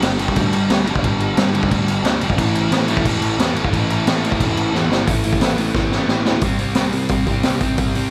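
Punk rock at a straight 178 BPM in 4/4, rowdy and upbeat, this short excerpt drives a bright, overdriven semi-hollow guitar riff, double-tracked and up front, over a growly picked electric bass, moving from G5 to A5 and later C5. A raw garage kit sits up front with a boomy kick, a high-tuned snare, gritty saturation and a rolled-off top in a small room. Drum fills land at 4.7 and 5.7 seconds before the shift at 6.4 seconds, all under light reverb.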